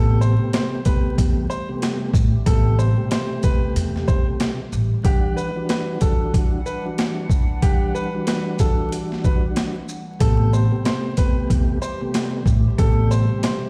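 Heard through a big sound system in a bare stone room with vinyl crackle, this short cut from a longer boom-bap hip-hop track moves at 93 BPM in A dorian with a swung 16th feel, its mood tough and reflective over chords of Am9, Em9 and back to Am9. Up front, a gritty, overdriven sampler-style kit with a thumpy kick, high-tuned snare, hi-hat and shaker drives the groove, while a woody gut-string upright bass drops out at 4.9 seconds and returns at 10.2. A mellow, flute-like tonewheel organ with chorus vibrato and cassette-tape colour carries the accompaniment, an intimate vintage upright piano plays a delayed melody, and a dark, detuned analog pad enters at 0.8 seconds, very quiet beneath them.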